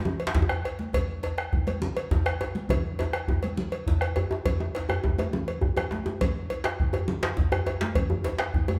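The ensemble sounds as if it is playing live in one large studio room, with a generous wash of reverb around the drums. This is a festive, earthy West African traditional drum ensemble in 12/8, moving at 137 beats per minute on the dotted quarter with a straight feel, taken from a longer piece. A deep, dark bombo anchors the low end, while a close, dry cowbell rings with a metallic edge. Two djembes share the texture: one is tight, cracking, compressed and saturated, sitting up front, and the other is medium-tuned, struck with hard hands and set back in the room. High-tuned congas add a bright, thin-skinned, band-limited, vintage tone. A drum fill from 5.5 to 6.2 seconds briefly punctuates the steady groove.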